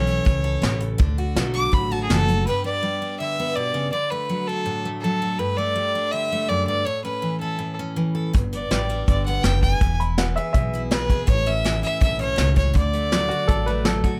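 Sunny and nostalgic, this cut from a longer honky-tonk and classic country piece moves at a straight 163 BPM in D major, tuned slightly low to A4 = 438 Hz, with a clear, earthy bowed fiddle carrying the melody up front and opening with a solo. A bright, full-bodied picked dreadnought guitar accompanies throughout, while the dark, woody pizzicato upright bass and a soft brush kit with a punchy kick and rolled-off top drop out at 2.5 seconds and return at 8.3 seconds. A bright, slightly detuned upright piano with audible action noise adds brief second-line touches from 10.0 seconds, all in a dry sound.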